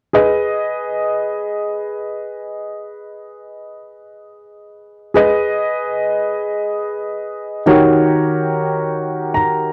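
Smoky and soulful, this short blues passage, cut from a longer piece, unfolds in a slow 12/8 with a straight feel. A single upright piano carries the accompaniment from start to finish, ranging from D#3 to A#5. Its tone is clear, woody and polished, with audible action noise and long sustain that lend an intimate, up-front presence. The harmony rests on G# minor before shifting to a D#7#9 chord at 7.7 seconds, and the piano closes with a brief fill from 8.9 seconds. Light reverb touches the piano within a dry, close recording with a 1970s studio character.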